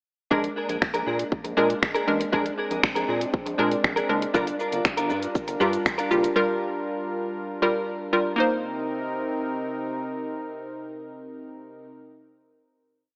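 A hollow, bouncy square-wave pluck accompanies this short, confident dance-pop piece, pushing detuned drop-2 chords up front with a pumping sidechain pulse and a chorus sheen. Beneath it, a smooth, detuned sawtooth pad holds sustained chords with a slow attack, also breathing with the pump. A clean, direct-recorded electric guitar with ensemble chorus plays a choppy, funk-style picked riff, while a round, deep analog bass carries a syncopated line with slides and chromatic approach notes. The electronic pop kit drives an energetic four-on-the-floor beat with a punchy kick, bright hats, finger snaps and shaker. The pre-chorus moves from Bb7 to Gm7; the guitar, bass and drums stop by 6.4 seconds, and pluck and pad ring on a closing Cm7 from 8.4 seconds. It all sits in a rough home-demo mix with a moderate plate reverb and an AM radio tone.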